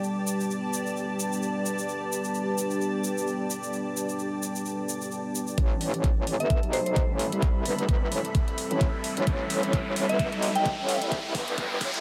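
A knocking, up-front electronic kick and an aggressive, saturated wobble bass with a metallic FM bite drive this bouncy, swaggering bass house excerpt in A minor at 130 BPM, arriving at 5.6 seconds along with metallic hats and a filter-swept build-up, with a riser entering at 7.1 seconds and a drum fill at 9.3 seconds. Before that, a grainy, close tube shaker ticks over a deep, moody sawtooth pad and a cloudy, evolving granular pad, both pumping under sidechain in a dreamy mix soaked in huge reverb. A soft, pure synth bell with analog delay floats in briefly, returning from 10.1 to 11.0 seconds before a noise sweep closes the build.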